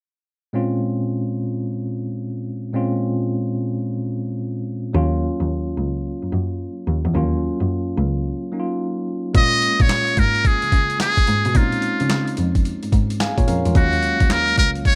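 A tine electric piano opens this confident, slick new jack swing cut in Bb minor, its clean, plate-reverbed chords coming through built-in speakers and sitting up front, moving from Bbm7 to Ebm9 at a 109 BPM swung groove. At 5.0 seconds a bowed cello takes the bass role, a single close player with soft attack, vibrato and expressive portamento. After a break at 8.2 seconds, a boom bap sampler-style kit drops in at 9.3 seconds, pitched down, compressed and overdriven, with a thumpy kick, medium-tuned snare, hi-hat and handclaps that sound gritty and re-recorded in a large room. Almost at once a trumpet with a metal mute carries the melody, brilliant yet thin and buzzy, breathy with light vibrato and a smooth top, playing a jazz-style solo bathed in plate reverb. The electric piano adds a fill before the chords return to Ebm9, all within a moderate booth ambience in this short section cut from a longer piece.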